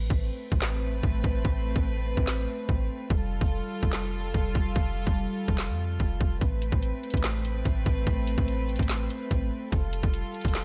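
A half-time trap groove in 4/4 carries this hard-hitting, menacing hip hop excerpt, which is cut from a longer piece and opens on a break that runs until 6.4 seconds. The trap drum kit enters at 0.1 seconds, up front with a hard-clipped kick, a woody snare, metallic hi-hats and handclaps, all with an electronic, produced, tape-warm character. Beneath it, a clean 808-style bass plays throughout, deep and boomy with a sine-like tone, a fast attack and a dark, decaying tail. A dark studio string section sustains bowed ensemble chords in a mid register, played sul tasto with a soft attack, a pure, floating quality and a smooth top. The harmony alternates between Amadd9 and Fadd9, and a digital ambience surrounds the sound.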